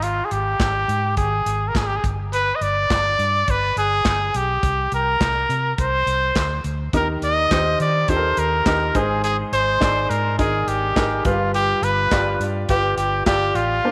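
This excerpt of piano-driven pop opens with a brilliant, up-front trumpet carrying the solo melody over a straight 104 BPM groove in 4/4, while a very quiet electronic downlifter sounds for the first 2.3 seconds. The trumpet sings with vibrato and scooped notes in a present pop style, supported by a dark, round, foam-muted fingered electric bass with an amped vintage character. An airy, polished country drum kit with a punchy kick, a medium-tuned snare, hi-hat and handclaps gives the track its acoustic studio-room feel. At 6.9 seconds a bright baby grand piano enters with natural-sounding accompaniment as the harmony moves from Eb to Ab and on to G7. Moderate plate reverb and a small room ambience frame the uplifting, warm mood.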